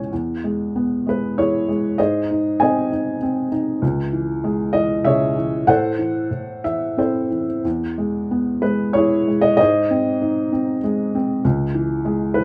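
A dark, intimate studio sound frames a felt-muted upright piano placed up front, with a moderate reverb adding a little air around its boxy, mellow tone. The thin felt softens every note, and the audible action noise of the instrument gives the recording a close, private character. This is lyrical classical solo piano in E major, moving in a relaxed 3/4 at roughly 90-100 BPM with a flexible, rubato feel. The piano plays alone throughout this short excerpt of about 12.4 seconds, ranging from Db2 up to Ab5. Its harmony moves from E to G#, then C#m and Am, before returning through E, G# and C#m, giving the passage a relaxed, warm turn.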